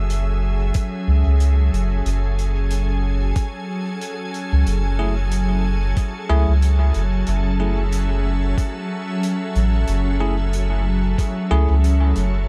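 Set in a small room ambience, this spacious, meditative ambient dub excerpt rests on one sustained minor ninth chord from a pure, full-bodied organ-like pad with ensemble chorus and reverb, over a deep, round sub bass and a muffled, thumpy kick sitting up front, while a distant, roomy hi-hat ticks with a swung feel and a bell-like tine electric piano adds clean stabs with dub echo from 5.0 to 11.7 seconds.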